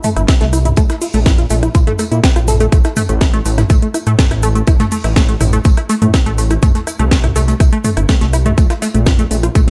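In this melancholic, cinematic melodic techno excerpt, a tight, nasal sequenced synth arpeggio with chorus, sidechain pumping and dub echo opens alongside a house kit of cracking snare, metallic hi-hats, rim clicks and toms, a background soul kit of hi-hat, snare and tambourine, and a grainy, very quiet tube shaker, before a deep, rumbling detuned saw bass enters at 0.2 seconds and a punchy, up-front electronic kick lands at 0.3 seconds, set in a small room ambience.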